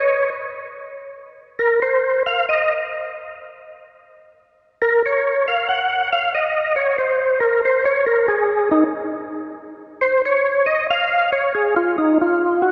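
Swung eighths at 93 BPM in 4/4 carry this bluesy, greasy jazz excerpt in Db major, where a lone percussive tonewheel organ plays throughout its 12.7 seconds. The organ sits up front with a full, lightly overdriven tone, a second-harmonic percussion click, chorus vibrato and a slow rotary speaker. A long, wet church reverb surrounds it, and the top end is rolled off.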